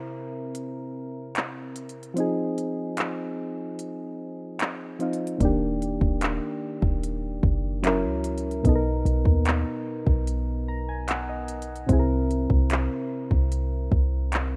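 Dreamy and romantic, this contemporary R&B piece moves at a relaxed 74 BPM, opening with a break where soft, round electric-piano-like synth keys with a warbling chorus sheen carry chords from C7 to Fm7 over a smooth, produced drum kit of soft kick, crisp hi-hat and handclaps. At 5.4 s a clean, deep 808-style bass enters with boomy sine tones as the harmony drifts through Ebmaj7, Gb7 and Bmaj7, and the vintage-toned keys add a brief fill before returning to C7. The rough home demo mix sits in a digital ambience, with keys, drums and bass all up front.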